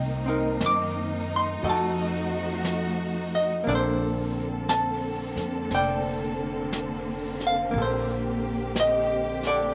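A dark, clean hollow-body electric guitar with a slapback echo leads this tender, romantic jazz ballad excerpt, set over lush bowed strings and a woody, growly pizzicato upright bass, with brushed snare and hi-hat joining at 0.6 seconds. The slow swing carries a Cm7 to F7b9 to Bbmaj9 progression, the picked guitar up front while the expressive, vibrato-laden strings hold sustained chords. The sound is dry, with airy, polished drums sitting low beneath the guitar and strings.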